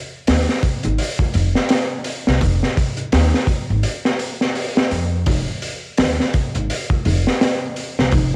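A crunchy breakbeat kit sits up front from 0.3 to 8.3 seconds, its high-tuned snare, tight kick and hi-hat carrying a gritty, saturated, rolled-off character and a cassette tape colour in this smoky, melancholic trip hop fragment at 84 BPM in F minor, swung on the 16ths. Underneath, a woody pizzicato upright bass with steel strings moves between F1 and F2 across the same span. The dry, homespun recording carries a layer of vinyl crackle, and it is cut from a longer piece.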